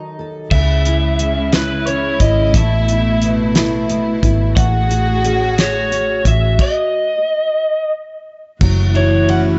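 A double-tracked, fingerpicked steel-string acoustic guitar opens this tender, romantic six-eight pop ballad excerpt with a full-bodied jumbo tone, before the rest of the band arrives at 0.5 seconds. An overdriven, lo-fi lead guitar from a small cranked amp carries the melody up front, its picked notes trailed by analog delay. Beneath it, a studio string section sustains soft-attack, sul tasto chords with vibrato and a smooth, intimate ensemble sound. A round, punchy, foam-muted electric bass and a dry 70s drum kit with a fat snare, tight kick and dark cymbals sit close and prominent. After a stop in the chord changes from 6.6 seconds, a mellow, tightly played French horn section enters at 8.6 seconds with a classical-style second line, all within a gentle studio reverb and a dusky, rolled-off top end.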